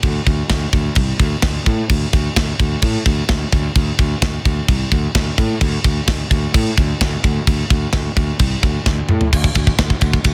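Dry, dense and heavily limited, this dark, aggressive heavy metal excerpt in straight 4/4 sets a growly, fuzz-laden fingered electric bass, overdriven and bright, up front against a tight, mid-forward acoustic drum kit of kick, snare, toms, crash and ride cymbals, its tight kick softly clipped, with a drum fill at 8.9 s leading into a new section at 9.3 s.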